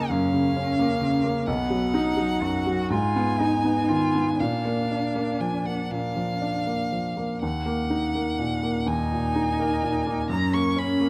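A violin, cello and baby grand piano begin together in this elegiac, yearning slow movement for piano trio, a short passage cut from a longer piece that unfolds in 6/8 with free, uneven rubato. The rich violin carries the high melody up front with smooth, even bowing and vibrato, while the cello sounds a more distant, warm second line beneath it, bowed with expressive vibrato and portamento. The clear, natural-toned piano sits up front as the louder accompaniment, its notes short in sustain, all heard through close, detailed microphones with light reverb.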